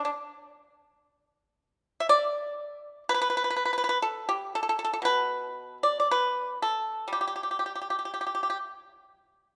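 The rhythm is free and rubato, hovering around 55 to 63 BPM in a loose 4/4, so the pulse breathes rather than marches. This is a short passage of Chinese traditional music for a solo pipa, cut from a longer piece, and set in a G gong mode with tuning at A4 = 439 Hz. The pipa plays alone for the full 9.6 seconds, ranging from B2 up to E5. Plucked with fingerpicks, its tone is acoustic, warm and percussive, with a dry attack placed up front in the mix. A moderate scoring-stage reverb with a 1.8-second decay gives the performance a sense of space, lending the pastoral, flowing mood an unhurried, open quality.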